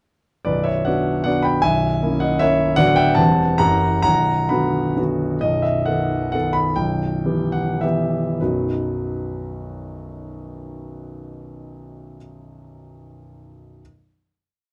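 Dotted rhythms drive this romantic classical dance in 3/4, its rubato pulse drifting between 90 and 165 BPM. A solo grand piano carries the whole piece, sounding from 0.4 to 13.8 seconds across a range from B0 to B5. Its tone is clear and intimate, set up front with long sustain and audible action noise, while octave bass notes and chords support a single-line melody whose tune moves in thirds. Harmonies circle around B minor, passing through a diminished chord and an F#7b9 before a B7 opens the coda. The pace slows from 4.8 seconds, and a final B major chord arrives at 8.4 seconds and rings out. Light reverb and a dark production frame a capricious yet nostalgic mood.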